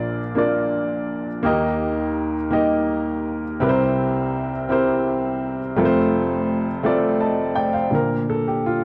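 A woody, naturally sustaining upright piano carries this brief gospel passage alone, sitting up front in a large studio with moderate reverb that lends the dark, warm production a reverent glow. In Bb major at a slow 56 BPM in 6/8, it moves from Bb through Eb, C7 and F before settling on Bbmaj7 at 7.9 seconds, reaching from the low bass to the upper register. The mood is uplifting, and the passage is cut from a longer piece, ending at 8.8 seconds.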